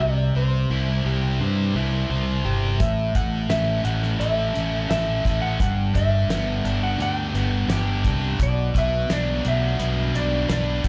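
Set in a straight 4/4 at 86 BPM, this classic rock excerpt moves with a confident, driving feel, cut from a longer piece and heard as a live gig through a club PA with small room ambience and club reverb. A sludgy distorted guitar, double-tracked, overdriven and up front, plays the riff from the start, ranging from G2 to C5 beside a growling fingered electric bass that is bright, overdriven and equally forward, holding between G1 and G2. Above them a clean lap steel guitar carries the melody between C5 and G5, its dark slide tone colored by slapback echo and tape echo. The damped 70s drum kit enters at 2.8 seconds with hi-hat, a fat snare and a tight kick, sounding dry and acoustic. The harmony moves through C, A, G and Bm, one chord roughly every few seconds across a single section.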